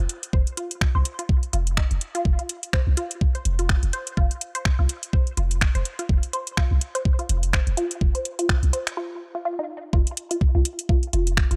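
A dry, gritty cassette-tape sound frames this hypnotic, clinical minimal techno fragment with a swung groove, where a knocking, up-front electronic kick and a garage kit of finger snaps and metallic hats join a deep, punchy sine sub bass with a pitch-drop attack and sidechain pumping, while a quieter squelchy, resonant blip pluck riff, colored by vintage 12-bit sampler texture, phaser, tape echo and its own sidechain pumping, plays throughout until a break at 9.0 seconds gives way to a drop at 9.9 seconds.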